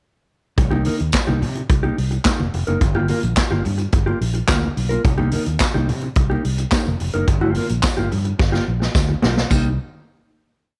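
A sultry, driving disco groove rolls out in 4/4 with a straight feel, alternating between Cm7 and Gm7 before settling on a final Cm7 chord at 9.5 seconds. The vintage drum kit sits up front with a punchy kick in a four-on-the-floor disco beat, open hats on the off-beats, dark cymbals and a medium-tuned snare layered with handclaps, its rolled-off top giving it a warm, studio-room character. A fingered electric bass, amped and punchy, carries a syncopated disco line with slides and chromatic approach notes, while a clean, compressed electric guitar adds a choppy sixteenth-note disco part with a dark tone. Low-tuned congas with a thick skin play a syncopated groove from a distant, large-room placement, and a jingly tambourine enters at 1.1 seconds, close and dry in the background on the backbeat. A drum fill from 8.4 seconds leads into the closing chord, with a small room ambience around the whole band.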